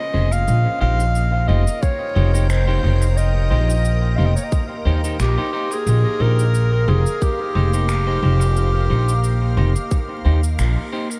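Spacious and deep, this short ambient dub excerpt pairs a clear, solo clarinet melody carrying dub echo with a woody, up-front pizzicato upright bass, a soft, detuned organ-like pad holding slow-blooming chords through its chorus and reverb, clean picked electric guitar stabs roughened by 12-bit sampler grit and echo, and a tight, tape-warm electronic kick arriving at 1.8 seconds alongside echoing cabasa and finger snaps, all over a light digital ambience and vinyl crackle, closing on a band accent at 10.6 seconds.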